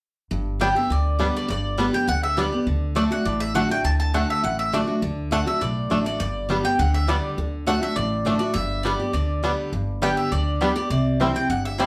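Driving and lively, this bluegrass cut runs at 204 BPM in G major, with a full-bodied picked steel-string guitar and a woody, thumpy upright bass under chords moving among G, D and C. A bright, round mandolin carries the melody up front while a twangy fingerpicked banjo plays arpeggios, and at 10.0 s a second, warm mandolin adds stabs. The band sits in a wet studio reverb, heard from further back in the room.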